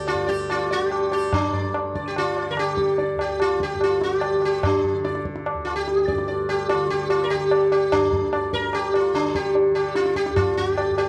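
Meditative and longing, this Hindustani classical excerpt at 146 BPM in 4/4 puts a plectrum-plucked, buzzing sitar up front with shimmering sympathetic strings, set over a mellow, softly plucked tanpura drone, while high-tuned, ringing tabla with a compressed, saturated edge joins at 0.1 s, the tempo speeding up throughout in a moderate recital hall reverb and a dark production.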